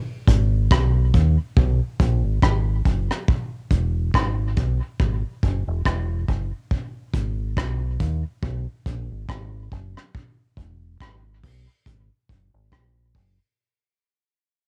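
Heavy and spacious, this dub reggae excerpt moves at 70 BPM in 4/4 with a swung sixteenth feel, pairing a dark, round fingered electric bass in its deep low register with an up-front soft brush drum kit of tight kick, hi-hat and rim click in a small, natural room, all captured dry on a cassette home recording and fading out across its full length.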